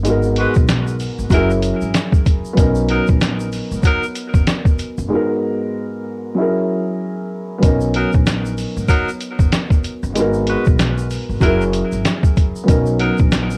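Lightly reverberant and cassette-worn, this home-recorded cut from a longer piece is a dark, tough boom-bap hip-hop groove at 95 BPM with a swung 16th feel, cycling through G#m7, F#7 and Bmaj7. Up front sit a muffled, compressed, pitched-down sampler-style drum kit with a thumpy kick, hi-hat and a medium-tuned snare, and a mellow, vintage concert grand piano with short sustain and deep lows, filtered and tape-soaked. Beneath them, a woody gut-string upright bass is plucked, a grainy tube shaker rustles in the background, and a bright, close-miked saxophone section with light vibrato punctuates with stabs in tape echo and plate reverb, first at 0.4 s and again at 7.9 s after a break at 5.1 s.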